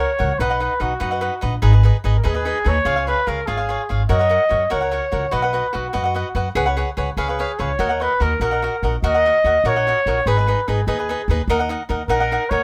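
Mexican folk in the mariachi tradition, this short passage, cut from a longer piece, moves in a straight 6/8 with a proud, festive mood. A mellow trumpet carries the melody in a classical style, its light vibrato and distant, roomy tone still sitting up front as the solo voice. A bright, crisp cavaquinho plays the accompaniment, its picked acoustic strings up front. Underneath, an upright bass played pizzicato gives a woody, growly, thumpy low end with steel strings. The three parts play together from start to finish over a progression moving through chords such as B, G#m, C#, F#, a C#7sus4 resolving to C#7, and D#m, all set in light reverb.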